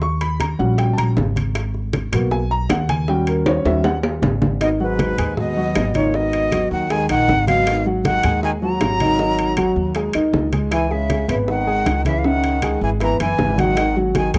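A straight 4/4 groove at 157 BPM drives this fiery, sophisticated Afro-Cuban jazz excerpt in G# minor, with up-front growly pizzicato upright bass, ringing metal-shell timbales, faint woody claves, and tight high-tuned bongos and hard-hand low-tuned congas sitting in the background. A warm, intimate concert grand piano with audible action noise and deep lows is featured over the opening D#7#9 and G#m9 changes until a drum fill from 3.5 s leads into the next section at 4.6 s. There a breathy, close-miked jazz flute takes the expressive melody with vibrato, while a punchy, distant trombone plays a forceful second line behind it in a dry, small-room 1970s-style studio sound.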